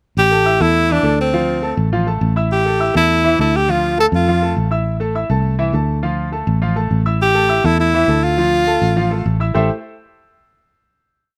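A bright, close-miked tenor saxophone and a round, foam-muted fingered electric bass open this short, driving salsa piece together, with a clear concert grand piano joining almost at once. The whole track is a passionate montuno vamp over A minor and D minor harmony, settling on a final A minor seventh chord at 9.6 seconds. Up front, the saxophone plays a pop-style solo line built from motif-based call phrases with vibrato, drops out at 4.5 seconds, and returns at 7.2 seconds. The dark, direct bass plays an amped tumbao that anticipates the chords. Beneath, the polished, present piano lays down a montuno in octaves with a deep low end and slapback echo. The sound is dry and open-air, with little reverb.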